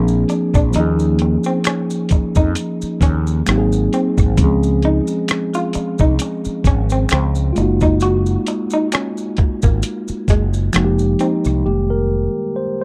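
A dry, close 1970s-style studio sound frames this late-night, soulful neo-soul R&B excerpt in swung 4/4, where a gritty, thumpy sampler-style drum kit with hi-hat, kick and rim click sits up front beside a round, dark fretless bass, a clean tine electric piano through built-in speakers voices lush extended chords, a slightly broken-up lo-fi electric guitar with spring reverb adds a second line, maracas and finger snaps ring in a live room, and the electric piano takes a solo from 11.6 seconds.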